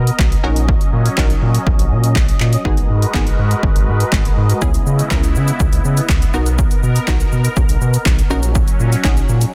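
A punchy analog drum machine sits up front in this bittersweet, driving dance-pop excerpt at 122 BPM in a straight 4/4, its kick and snare hitting hard with overdrive, while snare, handclaps and hi-hat carry a short room sound alongside a shaker. Underneath, a round analog bass built from sawtooth and sine with a touch of ring modulation holds the low end from G#1 to C#3, deep and mellow yet evolving, pumping with sidechain compression. A filtered supersaw swell of detuned unison sawtooths sustains soft-attacked chords from the very start, also breathing with sidechain pumping. From 0.4 seconds a bright chord stab joins with a plucky filter, fast attack and short decay, its detuned sawtooth and pulse tones thickened by chorus as it moves through D#m7/A#, G#m7, C#m7 and Bmaj7 before returning to D#m7/A#. The mix is dense and heavily limited in a modern style, set in a digital ambience.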